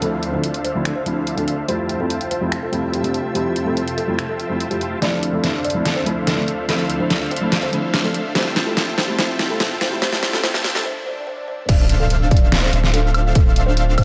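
Light reverb and a digital ambience, high-pass filtered, give this emotional, lush future bass excerpt an airy, polished sheen at 144 BPM in a half-time feel in D minor, moving between Dm7 and Fmaj7. A woody, hollow kalimba carries the melody with digital delay, over a felt-muted upright piano that is soft, dark and intimate with tape echo until 10.8 s, while a shimmering, ethereal ambient pad with chorus holds sustained chords in the background and a huge, thick supersaw riff drives through a low-pass filter, each of these parts pumping with sidechain. A dubstep drum kit with a deep snare sits up front, adding finger snaps, woodblock, hi-hat, ride and crash, and very quiet downlifters, risers and swells appear at the opening and again during the build. From 5.0 s a build-up brings a drum fill and filter sweeps on the supersaw and pad, then a short break and swell lead into the drop at 11.7 s. 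There a punchy electronic kick, a deep, sine-like 808-style bass held long on D1, an impact and a dreamy, chorused lead playing arpeggios on F5 all arrive together.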